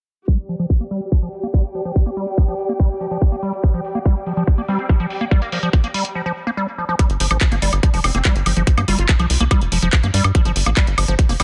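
Psychedelic trance at 143 BPM in G minor, hypnotic and intense, this short excerpt opens with a tight, up-front electronic kick, a drum kit of handclaps, metallic hats and woodblock, and a squelchy, resonant acid bass riff under a filter sweep, with phaser, 12-bit sampler grit, delay and sidechain pumping, while a lush, bowed string section adds vibrato texture until 6.2 seconds. After a brief break, the second section begins at 7.0 seconds on an Fsus2 chord, where a dark, punchy sawtooth sequencer bass drives underneath, and a metallic, aggressive FM wobble bass, present since 4.7 seconds with subtle chorus and digital delay, sits in the background. The master is dense and heavily limited, set in a digital ambience.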